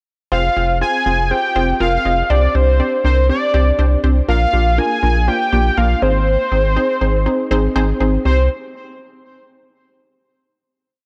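A fat, nasal sawtooth lead with sub octave, ring modulation, vibrato and a filter sweep carries up-front call phrases over lush, detuned unison plucks in eighth-note triads and a deep, round analog bass pulsing in eighths, in a cool, nocturnal C minor synth-pop pre-chorus at 121 BPM that moves through Fm, Csus2, Bb and Ab before settling on a final Cm chord at 8.3 seconds, all set in a dark production with concert hall reverb.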